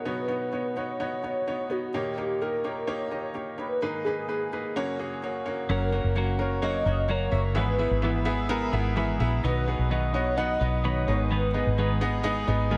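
A straight 4/4 pulse at 128 BPM drives this anthemic, uplifting pop excerpt in B major, cut from a longer piece. From the start, a velvety synth lead with a detuned sawtooth edge, chorus and vibrato carries the melody over a bright upright piano whose woody tone and audible action noise sit intimately up front. At 5.7 seconds the arrangement opens up: a round, foam-muted vintage electric bass enters prominently, a clean, twangy electric guitar plays a compressed riff soaked in lush chorus, and a very quiet, evolving pad adds resonant, wave-folded sustained chords with phaser and a filter swell. The harmony moves from Badd9 through D#7 and G#madd9 to F#, then through E/G# and B to G#m. Light reverb gives the whole a gentle sense of space, and the lead drops out at 12.2 seconds while the other parts continue to the end.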